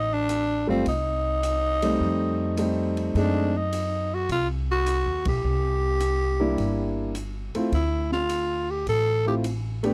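Small-group swing and bop jazz at 105 BPM with a sophisticated, swinging mood, cut from a longer piece, where a raspy, growling tenor saxophone carries the melody with breathy, scooped notes over a woody pizzicato upright bass, a boomy-kicked open drum kit entering at 0.3 seconds with a high-tuned snare, hi-hat and ride, and an intimate grand piano joining at 0.7 seconds with audible action noise, all captured in a dry, close 1970s-style studio sound as the chords move from F7 through F#dim7 and C7 to Dm, punctuated by a band accent at 5.2 seconds.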